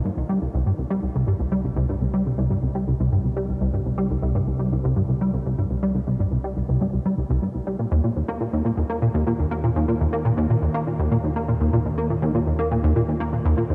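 A punchy, wave-folded plucky analog bass riff up front, thickened by ensemble chorus and delay, drives this cosmic, expansive slice of sequencer-driven space music in C minor at 122 BPM, with a fat, detuned, nasal analog bass sustaining low in the background, the harmony moving from C5 to Eb5 at 7.8 seconds, all set in a huge ambient reverb with a dark production.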